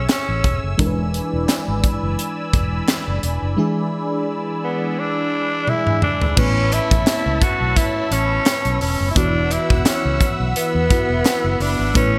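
A lightly swung 86 BPM groove in 4/4, built on a punchy studio drum kit with a high-tuned snare, tambourine and a fill at 5.7 s, and a dark, round, foam-muted fingered bass, carries this romantic, uplifting 1980s-style pop excerpt, where a raspy, up-front tenor saxophone sings the melody through delay over a lush FM electric piano with a soft pad layer, chorus and tremolo, a swirling phased analog pad holding high chords, and very quiet crisp group handclaps, all moving from Amaj7 and E7 to Aadd9 at 6.4 s and then Esus2, in a bright digital production with moderate plate reverb.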